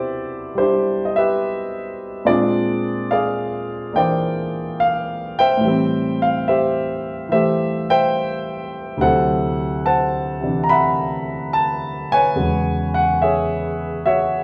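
Swinging eighths at a relaxed 71 BPM in 4/4 carry this playful solo jazz fragment, cut from a longer piece, where a warm, natural grand piano sits up front in a moderate large-studio reverb, ranging from D2 to B5 as it moves through Cmaj9, Bb9, Am7 and D9 before landing on E69 at 12.4 seconds.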